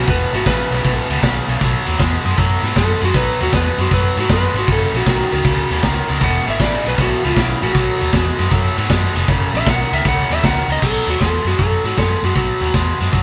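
Soulful and laid-back, this electric blues shuffle rolls along at 156 BPM in 4/4 with a swung feel in B mixolydian, and it is cut from a longer piece played live in one room with light reverb. A dark, slightly broken-up electric slide guitar, played with fingerpicks and carried by tape echo, takes the melody as a solo from the start to 10.8 seconds and stops at 12.7 seconds, while a biting overdriven guitar plays a bright riff up front. Underneath, a round, foam-muted fingered bass and a vintage drum kit with a punchy kick, high-tuned snare and dark cymbals hold the groove through chords moving among E5, B5 and F#5.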